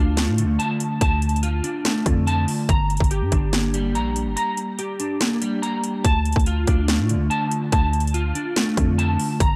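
A growling, buzzy 808-style bass anchors this menacing, brooding half-time trap excerpt, joined by dark, clean picked electric guitar arpeggios colored with ensemble chorus, a low-pass filter and analog delay, and an overdriven electronic trap kit of hard-clipped kick, sharp snare and metallic hats, all sitting up front in a dry, gritty recording with digital ambience and a break from 4.4 to 6.0 seconds.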